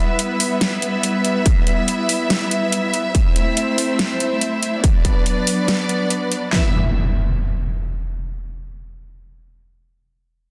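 A studio string section opens this heavy, menacing stretch of wobble dubstep, holding soft-attack bowed chords with vibrato and an intimate, close sul tasto tone that pumps under sidechain compression from the very start. At 142 BPM in 4/4 with a half-time feel, the E minor harmony moves from Em to Am and Bm before settling back on Em. Electronic drums come in almost at once, with metallic hi-hats and a huge snare, and at 1.5 seconds a second layered kit adds handclaps and a distorted kick with its own huge snare, both kits sitting up front with a tape-warm tone. An electronic impact lands at 6.5 seconds as the drums and strings drop away, closing this cut from a longer piece. A lush hall reverb surrounds the parts, and the master is dense and heavily limited in a modern way.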